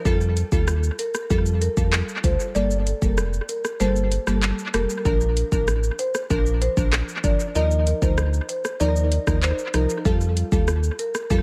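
An echo-heavy digital ambience wraps this sunny, bouncy dancehall cut at 96 BPM in Bb major, where a woody marimba carries the melody over crisp, detuned wavetable chord stabs with a filter pluck, both trailed by tape echo, while a deep sine-and-triangle sub bass sits up front beside an overdriven electronic drum kit of handclaps, metallic hi-hats, rim clicks, shaker and a deep kick that drops out between 3.8 and 5.1 seconds.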